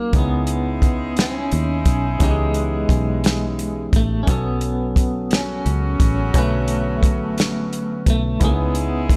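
Slow six-eight R&B at 58 BPM in C# minor, yearning and sultry, where a slightly broken-up electric guitar carries the melody with tremolo over a barky, lightly overdriven tine electric piano, a round, foam-muted fingered bass, distant horn stabs with light vibrato and octave doubling, and an up-front soul drum kit with a tight kick and rolled-off top, set in a small room ambience as the harmony moves from C#m9 to Bm9 and back to C#m9 at 8.4 seconds in this fragment of a longer piece.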